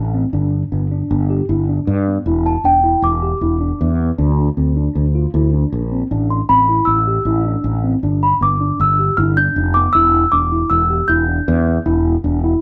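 Brooding and tense, this progressive instrumental excerpt moves at 156 BPM in a straight 5/4, centred on E phrygian and tuned to A4 = 439 Hz. A bell-like, delicate celesta carries the melody up front as a solo throughout, while a mellow tine electric piano plays clean arpeggios beneath it. A growly, amped fretless electric bass holds the low end. The band plays live in one room with moderate studio reverb, and the excerpt is cut off at about 12.6 seconds.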